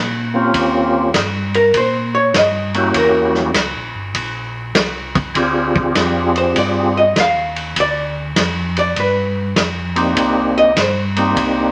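Swung eighths at 100 BPM in 4/4 drive this bluesy, soulful soul jazz organ trio excerpt, where a round, dark tonewheel organ bass with slow rotary and chorus vibrato sits beneath a fat, lightly overdriven percussive organ melody marked by key click, a dry soul drum kit with a tight kick and dusky cymbals keeps time from 0.5 s, and a clean, picked hollow-body archtop guitar comps up front from 1.6 s, the trio heard in a wet studio reverb.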